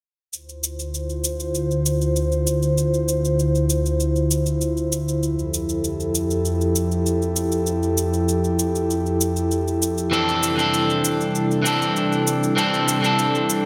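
Relaxed and wistful, this sunset chillout fragment at 98 BPM in D minor sets an airy, breathy pad with detuned chorus and a filter sweep, moving through Dm7, Fmaj9 and C69 over a layered electronic shaker, until a slightly broken-up, picked electric guitar with delay enters up front at 10.1 seconds, all within a moderate concert-hall reverb.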